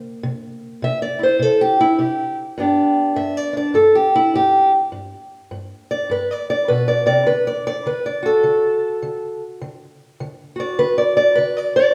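Gritty and soulful, this short cut from a longer acoustic country blues piece features a single fingerpicked steel-string guitar playing solo from start to finish. Set in 4/4 with a lilting swing on the eighth notes, the parlour guitar has a dark, woody voice and the dull character of old strings, ranging from G2 up to E5. Tuned slightly below standard pitch at A4 = 436 Hz, it sits up front in the mix. The harmony opens on C7, settles onto G at 2.6 seconds and moves to D at 7.3 seconds. A generous recital-hall reverb from a church or concert hall setting surrounds the instrument with a lingering, spacious tail.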